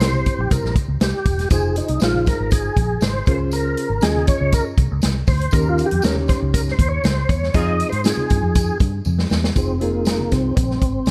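A straight 4/4 groove at 119 BPM from a punchy, up-front vintage drum kit, a dark, foam-muted fingered electric bass, a bright jingly tambourine and very quiet, close congas drives this urgent uptempo 1960s-style soul passage in F minor, where a clear tonewheel organ carries the melody with key click, chorus vibrato and a slow rotary speaker over a barky, lightly overdriven reed electric piano with fast tremolo, while a distant horn section adds a brief accent at 7.5 seconds before a drum fill at 9.1 seconds leads into a new section at 9.6 seconds, all in light reverb.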